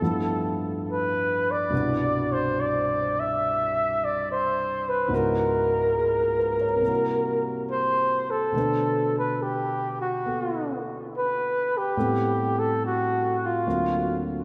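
Swung eighths at a slow 70 BPM in 4/4 carry this late-night, romantic jazz fragment, lifted from a longer piece, where a roomy flugelhorn sings the melody with gentle vibrato, a soft attack and a touch of tape echo. An intimate grand piano accompanies it from start to finish, its natural tone carrying faint action noise as the harmony moves from G13 through Cmaj9#11 and C#m11 toward a closing D7alt near 13.7 seconds. A lush plate reverb soaks the whole mix in a dreamy haze.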